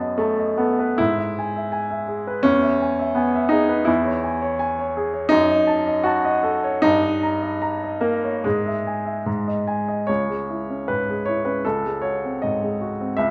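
In a flexible 2/4 pulse hovering between 71 and 85 BPM, this romantic classical character piece for solo piano breathes with rubato, pushing and pulling the time. A clear, polished baby grand sits up front, ranging from C#2 up to A#5 across the whole 13.3-second excerpt, which is lifted from a longer work. The harmony opens on a dominant seventh leading into E major, then darkens into C# minor from 3.9 s, passing through a half-diminished chord and a D#7 before briefly returning toward E. At 10.1 s a new section settles on C# minor with a G#7 over C#, deepening the bittersweet, stormy mood. A moderate recital hall reverb gives the piano a natural sense of space around its close, present tone.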